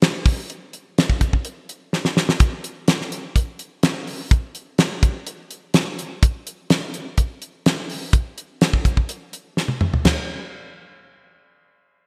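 A damped, 70s-style acoustic drum kit sits up front in this short jazz passage cut from a longer piece, with a fat snare and a tight kick leading a sound that feels intense and funky. The groove moves at 126 BPM in a straight 4/4, with crash cymbal, hi-hat and toms filling out the kit. Drum fills break the pattern at 1.9 seconds and again at 9.6 seconds, and the drums stop at 10.2 seconds as the piece turns into a brief new section. The kit is dry at its core yet carries a gated reverb, set in a light room reverb. The production has a bright, 1980s-style digital sheen.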